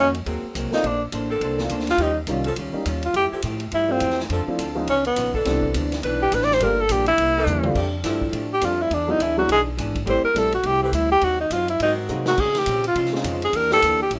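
A brisk 208 BPM big band swing in 4/4 drives this energetic fragment in C major, with a distant, roomy drum kit (boomy kick, ride and hi-hat) dropping fills at 7.5 and 12.1 seconds while a woody, thumpy pizzicato upright bass and a clean, picked hollow-body electric guitar keep the pulse moving. Out front, a breathy, whispered tenor saxophone solos with intimate vibrato and a soft attack over sustained chords from a saxophone section and short, natural piano comping, where the action noise can be heard. Moderate reverb and a rough demo mix give it a homespun feel as jazz harmonies like Ab9, Bbmaj9 and Fmaj9 slide past.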